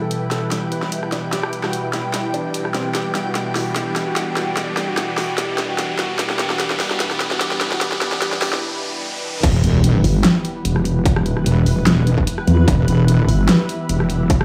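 Heavy wobble dubstep with a heavy, menacing mood, heard as a short cut from a longer piece in a swung half-time feel. The opening build-up pairs a dark, mellow concert grand piano melody, softened by a low-pass filter and tape echo and put through a filter sweep, with a lush, thick unison pad whose chorus and phaser give it a bright shimmer, while a cloudy granular pad drifts in the background. A dubstep drum kit with a huge snare, bright hats and crash cymbals sits up front through a drum fill, and an electronic riser climbs beneath until the piano stops at 8.6 seconds for a brief break. The drop lands at 9.4 seconds with an impact and sub drop, as a distorted electronic kick and a heavy, saturated sawtooth wobble bass hit together, the pads pumping against the beat. From 10.0 seconds a nasal vowel-sweep wobble bass joins, its formant filter adding a vowel-like edge to the low end.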